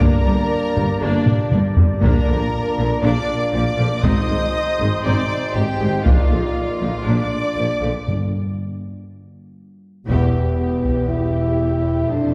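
Dark and dramatic, this epic orchestral film-score excerpt moves at 119 BPM in 4/4 over Gm, Bb and Ab chords, with a focused chamber violin section singing the melody above lush, distant symphonic violins, violas and cellos, clear French horns and mellow woodwinds holding sustained chords, a soft-edged tuba and vibrato-laden double basses anchoring the bass, and hard-stick taiko driving the pulse until a break at 8.1 s brings a crisp, up-front timpani hit before the taiko return with a full accent on an Em chord at 10.1 s, all set back in a reverberant scoring stage.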